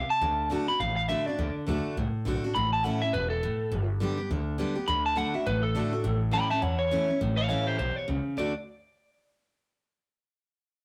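A swung eighth-note feel drives this short, rowdy rockabilly cut from a longer piece, moving at a brisk 206 BPM in 4/4 and rooted in D major. The electric guitar carries the melody up front with a bright, twangy, scooped tone that sits at the edge of break-up, bathed in spring reverb. A picked dreadnought acoustic guitar, bright and also forward in the mix, supplies the accompaniment beneath it. Underneath, a pizzicato upright bass with gut strings gives a woody, dark, thumpy foundation. The harmony moves through D, A and G before landing back on D at 8.4 seconds. All three parts play together for the full length, captured in a rough, retro rehearsal-room recording with a small room's ambience and warm saturation.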